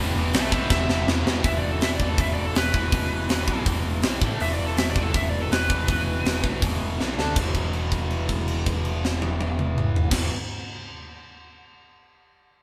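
Light reverb gives this punk rock excerpt the feel of a band playing live in one room, with the tight metal drum kit sitting up front, its bright cymbals, high-tuned snare and tight kick carrying a polished, airy big-room sound. The mood is urgent and aggressive, driven by a scooped, compressed distorted electric guitar riff, a raw garage guitar whose overdriven riff sits in the background, and a growly, punchy overdriven picked electric bass. A very quiet, double-tracked tight distorted guitar adds its riff only in the opening 1.4 seconds. A dark, overdriven biting lead guitar plays a solo from 0.3 seconds until 6.6 seconds, while the drums mark the transitions with fills. From 7.4 seconds a long held note rings out, and the clip breaks off mid-piece.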